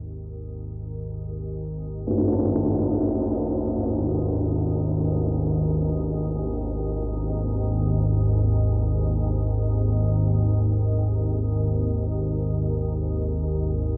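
Vast and ominous, this dark ambient drone unfolds in free time, a short cut from a longer piece. An up-front, organ-like drone with a nasal, sine-and-triangle tone and a slow attack fades in from the start and sustains low under ensemble chorus and a huge, wet reverb. At 2.1 seconds a single tam-tam stroke sounds bright and acoustic, its cymbals passed through a low-pass filter, and the whole sound stays dark, holding nothing above 7.8 kHz.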